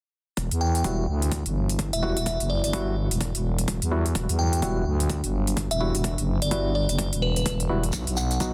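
Gritty and aggressive, this bass house excerpt runs at 127 BPM in E minor with a swung sixteenth-note feel, opening at 0.4 seconds with a growling, thick FM bass pushed up front through overdrive and sidechain pumping, a punchy, tape-warm electronic kick re-recorded in a small room, and crisp electronic hi-hats. A glassy, crystalline synth bell carries the melody with chorus and delay, while hollow, percussive organ stabs with chorus, delay and pumping, along with a deep, moody analog pad sitting dark in the background under chorus and phaser, fill out the Emadd9 harmony. At 7.9 seconds the chord moves to B and a grainy acoustic shekere joins, all under light reverb and a dense, heavily limited modern master.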